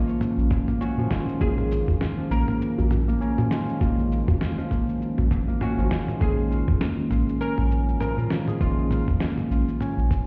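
A woody, plectrum-plucked oud carries the melody from the start over ringing Celtic harp arpeggios, a bell-like tine electric piano with tape echo, a warbling, lo-fi pad on sustained Bb minor chords, and a deep, round sub bass up front. The meditative, earthy organic downtempo groove sits at 100 BPM with a 16th-note swing, driven by a gritty sampler-style soul drum kit with a fat snare, shaker and toms, and a thumpy overdriven electronic kick from 0.5 seconds, while a vintage djembe with metal rattles murmurs in the background until 6.0 seconds. Sidechain pumping breathes through the bass, pad and electric piano, and the whole mix sounds muffled as if heard through a wall in a stone room, with the oud falling away at 9.2 seconds.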